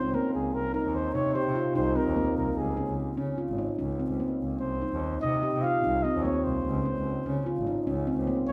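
Urgent yet hypnotic, this short excerpt of contemporary chamber music moves at 148 BPM in a straight 5/4 in C phrygian, circling between Db and Cm7 harmonies. A mellow solo flugelhorn carries the jazz-style melody with scooped notes, while a ringing, dark stainless-steel handpan played with the fingertips spins meditative arpeggios beneath it. A single bowed double bass anchors the low end with a biting, earthy tone and light vibrato, all three up front in the reverberant space of a church or concert hall.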